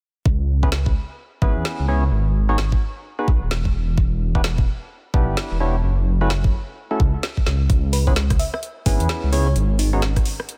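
A dark, rumbling detuned saw bass and an overdriven, knocking electronic kick open this moody, soulful two-step UK garage excerpt with swung sixteenths, soon joined by hollow, nasal organ stabs washed in chorus and digital delay and an overdriven garage kit of woody snare, rim click and metallic hats, while a sparkling, bell-like FM electric piano with chorus, phaser and delay carries the melody from 7.9 s over a dense, dry, heavily limited mix moving through C#m7, G#m7, Em7 and F#m7.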